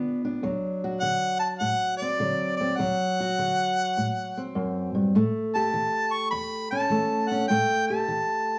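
A swung 4/4 groove carries this gritty, soulful acoustic country blues excerpt, where a dark, woody fingerpicked steel-string guitar with old strings plays accompaniment up front from the start, joined at 1.0 seconds by a clear, smooth-topped harmonica playing a jazz-style solo melody with vibrato and scooped notes in plate reverb, over D7 and A7 chords in a small, moderately reverberant room.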